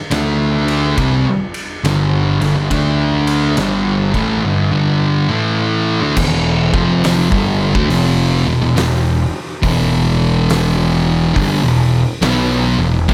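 Ominous and brooding, this stoner and doom metal excerpt crawls at 69 BPM in E minor with a swung feel, as an up-front thick fuzz guitar riff and a dark second fuzz guitar in the background (which drops out at 6.2 seconds, returning briefly at 13.1) ride over a growly, overdriven picked bass and an oversized low-tuned drum kit with a fat snare, punchy kick and dark cymbals in a pumping stone room, moving from D5 and G5 power chords to an E minor chord at 6.2 seconds.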